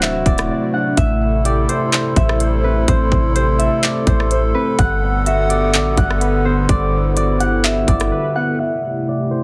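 A thumb-plucked concert harp melody through plate reverb and tape echo leads this ethereal, spacious excerpt of half-time atmospheric cloud-rap at 126 BPM in A dorian, over a hollow, flute-like pad pumping with sidechain and chorus, warbling, nostalgic lo-fi synth key arpeggios in the background, a deep, round 808-style bass and an up-front trap kit of hard-clipped kick, crisp hats, handclaps and rim clicks that mutes briefly at 0.5 seconds and breaks off at 8.1 seconds, as D7 gives way to Am7 and Gmaj7 under a heavily compressed, radio-like sound in a small room.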